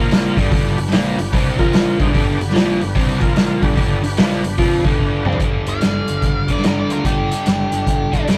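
A punchy, up-front vintage drum kit with a pumping small-room sound drives this swaggering, raunchy blues rock and southern rock excerpt with a swung feel, joined by a double-tracked overdriven guitar riff, a fuzzy picked bass in the background and a gritty tonewheel organ holding sustained chords through a slow rotary speaker until 5.4 s, when a drum fill leads into a dark octave-fuzz lead guitar melody from 5.7 s over a very quiet, bright second lead line, captured as a rough rehearsal-room recording with tube saturation.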